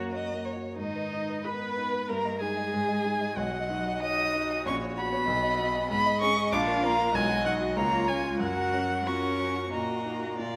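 A quick, restless classical-period movement for piano quintet in a rubato 2/4, where an up-front solo violin carries an urgent, vibrato-rich melody with a focused, smooth top, while a second, soft-attacked violin and a rich, expressive cello trace sliding second lines over the natural grand piano and a background viola, all heard on a moderately reverberant scoring stage as the harmony moves from G-sharp minor to E-flat minor at 5.9 s in this brief fragment of a longer work.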